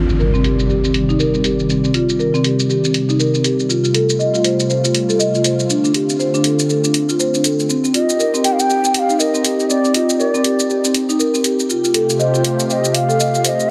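A swung, filtered electronic shaker and hi-hat groove drives this hypnotic, spiritual afro house excerpt, opening with an electronic impact as a round, woody marimba plays up-front arpeggios through delay and a detuned, warbling sawtooth pad holds sustained chords under a filter sweep, before an airy, hollow bansuri joins at 7.9 seconds with a vibrato melody, all set in a moderate plate reverb with a heavily compressed, radio-like sound.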